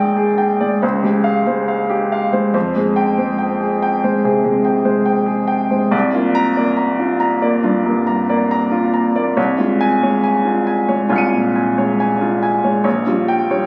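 Nocturnal and hazy, this fragment of a longer impressionist solo piano piece drifts in F minor at a rubato 70 BPM, its warm, open baby grand sitting up front with long sustain as it moves from Bb6 and Dbmaj7#11 through Fmadd9, C9sus4 and Eb9sus4/C to a closing Bbm6, all heard through a moderate scoring-stage reverb and the compressed, roomy tone of a phone recording.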